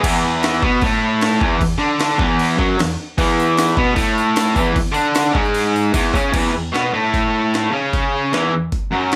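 Rowdy, swaggering garage rock in E major at 152 BPM, cut from a longer piece, drives a bright, overdriven, picked and double-tracked electric guitar riff up front over a gritty, pitched-up, compressed sampler-style drum kit with a thumpy kick and medium-tuned snare re-recorded in a large room, as a jingly, close and dry tambourine joins in the background at 3.2 seconds and the kick and snare drop out from 5.6 to 6.3 seconds, when the harmony shifts to E5, the whole set in a moderate club reverb.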